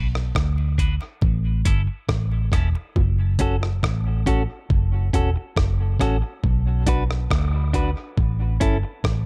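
Hypnotic and spacious, this short dub reggae cut from a longer piece sets a dark, round, foam-muted fingered electric bass and a gritty, compressed sampler-style drum kit with a thumpy kick and rim click up front, while a clean, picked electric guitar accompaniment trails dub echo through a high-pass filter, and low-tuned bongos, played with soft hands and likewise filtered and echoed, sit in the background from 0.6 to 3.2 seconds, all in a dry room with little reverb.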